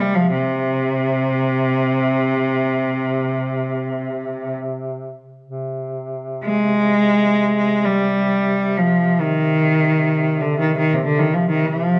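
In free time and C minor, this mournful Caucasian folk lament is carried by a single bowed cello, bright and biting with light vibrato, singing an intense, longing melody up front from C3 to Ab3, while a duduk sustains a soft drone on C3 beneath it, its vibrato and scooped notes giving it a folk-style, roomy character. Both play throughout the 12-second excerpt, cut from a longer piece, and sound distant in a moderate recital-hall reverb. The whole recording has the worn, warbling pitch drift of old cassette tape.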